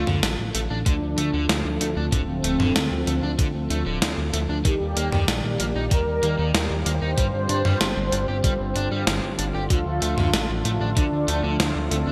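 Synthwave excerpt at 95 BPM in D phrygian, driving and moody, where a round, dark synth brass melody with chorus and delay floats over a bold, brassy analog pad pumping with sidechain, a crunchy overdriven guitar riff bathed in lush chorus and delay, and a fat, detuned sawtooth bass, while a gated 80s digital drum machine with a gated-reverb snare and toms and a thumpy electronic kick entering at 0.9 s drive the Dm, Ebmaj7 and G7sus4 changes through a bright 1980s-style digital mix with a moderate plate reverb.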